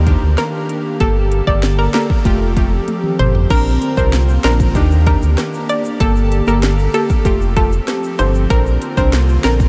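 A deep, full sine-and-triangle sub bass sits up front from the opening, alongside a hollow, bouncy square-wave pluck melody with chorus and tape echo, punchy brassy synth stabs in the background, and an airy, flute-like pad whose chorused chords pump against the sidechain. An electronic afro-pop drum kit with a deep kick, sharp snare and smooth hats gives this sultry, tough dancehall excerpt its drive, and a drum fill from 2.9 seconds leads into a new section. At 3.5 seconds a close, dry egg shaker and ringing timbales join in the background, all within a dreamy mix soaked in huge ambient reverb.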